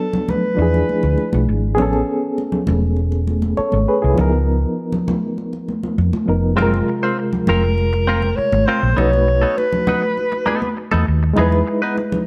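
A straight 4/4 groove carries this cinematic, bittersweet cut of lush 1970s-style soul, where ringing, high-tuned congas and a round, punchy hollow-body bass sit beneath a barky, lightly overdriven electric piano with fast tremolo, a breathy subtone alto saxophone with vibrato sings the melody briefly at the start and again from 7.5 s, and a bright, twangy clean guitar riff joins at 6.6 s, inside a dark production with echo chamber reverb and small room ambience.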